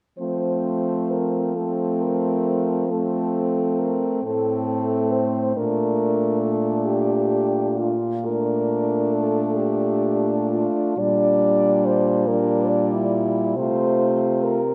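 A mellow French horn carries the melody between F4 and D5, its light vibrato and smooth top giving this serene, tender classical piece for horn quartet a lyrical voice. Beneath it, a second horn with a clear tone sings a supporting line from C4 to F4. A warm third horn holds the accompaniment around G3 to A3, and a fourth horn with a soft attack anchors the bass from A2 to F3, sounding roomy and set up front. The music moves in a slow, rubato 12/8 at roughly 41-47 BPM in F major, with the harmony drifting from F to Bbmaj7 at 5.6 seconds, then to Gm/Bb at 11.0 seconds before settling on F/C at 13.6 seconds. A moderate concert hall reverb and a dark production wrap this brief passage, cut from a longer piece, in a soft glow.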